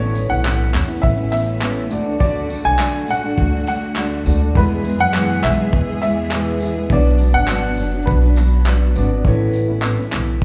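A straight 4/4 pulse carries this sunny, heartfelt acoustic pop fragment, set by a muffled, cloth-damped drum kit with a tight kick, tambourine and claps, a hollow group handclap in the background from 0.4 seconds, and a dark, woody pizzicato upright bass sitting up front. A fingerpicked steel-string acoustic guitar and a background concert grand piano with long sustain fill out the accompaniment, while a smooth, bowed string section holds chords until 9.2 seconds. The melody comes from an intimate, slightly detuned upright piano with audible action noise, heard until 8.9 seconds, set within the wet reverb of a recital hall.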